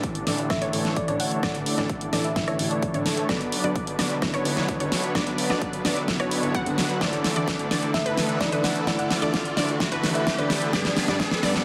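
A big-room drum kit with a huge, up-front snare and a punchy electronic kick powers this emotional, powerful build-up of festival progressive house at 129 BPM in B minor, with a drum fill and filter sweeps running across the whole cut from a longer piece. Bright supersaw chords carry the riff with cassette-tape colour, sidechain pumping and dub echo, over a thick detuned saw bass, a very quiet lush unison pad and a background unison pluck arpeggio. A muted felt upright piano with audible action noise and 12-bit sampler grit adds accompaniment, a tine-like FM thumb-piano synth plays a chorused melody from 0.5 and 7.9 seconds, and a riser enters at 3.5 seconds over an Asus4, Bm, Dsus2 and G progression in a moderate digital room and a dense, heavily limited master.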